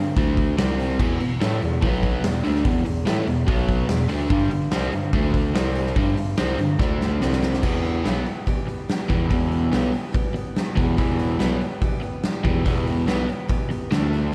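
Driving and brooding, this classic rock passage in E minor at 144 BPM rides on a bright, double-tracked overdriven electric guitar riff with spring reverb up front, a soft-attack bass clarinet carrying the bass line, and a huge arena drum kit with punchy kick and bright cymbals whose fill at 6.8 s leads to a boxy picked archtop acoustic guitar entering at 7.6 s in the background, finger squeak and all, within a lush hall reverb.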